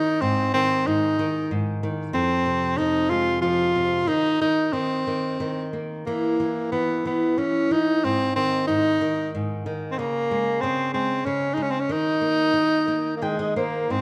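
Lightly reverberant, this short passage is a gentle, innocent lullaby in Ab major, moving in a rubato 3/4 at around 92 BPM. A clear, punchy tenor saxophone carries the melody up front in a smooth, pop-style solo with light vibrato. A fingerpicked flamenco guitar with fresh strings and audible finger squeaks accompanies it, adding a fill from 12.9 s to 13.9 s.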